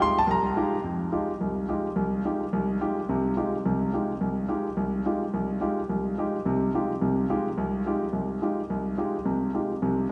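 A lone concert grand piano opens the recording at 0.0 seconds on an Fm9 chord, setting a searching, intense jazz mood in F minor. The piece moves at a brisk 214 BPM in 4/4, with the eighth notes swung, and this short cut from a longer performance runs to 10.1 seconds. The piano covers a broad span from C2 to C6, its deep bass anchoring a sound that feels intimate and natural. It sits up front, close enough that the action noise of the instrument can be heard alongside the notes. A wet church reverb with a 2.8-second decay surrounds the playing, giving it the resonant air of a large hall or church.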